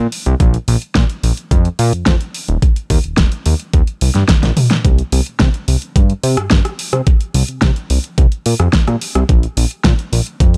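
A thick, detuned sawtooth analog bass sits up front with a filter sweep, its fast attack and sustained notes anchoring this sleek, groovy nu-disco excerpt in straight 4/4. A knocking, overdriven electronic kick and a layered pop kit of fat snare, rim click, toms and warm hi-hats drive alongside it, with a drum fill at 4.3 seconds. The sound is dry and gritty, with the drums re-recorded in a small room.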